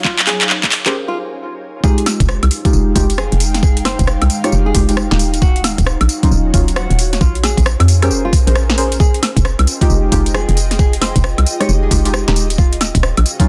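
A dense, heavily limited modern master with a digital ambience and a high-pass filter gives this excerpt of soulful, moody UK garage a polished, tightly packed sound. The two-step groove swings on its sixteenths. An overdriven, knocking electronic kick is layered with an up-front garage kit of woody snare, metallic hi-hats, handclaps, rim clicks, tambourine and woodblock. A short build-up opens the track with a drum fill, filter sweeps and a break. A deep, dark chord stab with a warbling vintage character, chorus and dub echo enters at 0.9 seconds. The drop lands at 1.8 seconds, and at 2.2 seconds a hollow, bouncy FM bass joins up front with a punchy, fast attack and a decaying tone. Across minor-ninth chords, an ethereal, airy pad breathes with slow attack, ensemble chorus, reverb and sidechain pumping. Above it, a quiet fingerpicked nylon-string guitar with fresh strings and a deep classical tone carries the melody through dub echo.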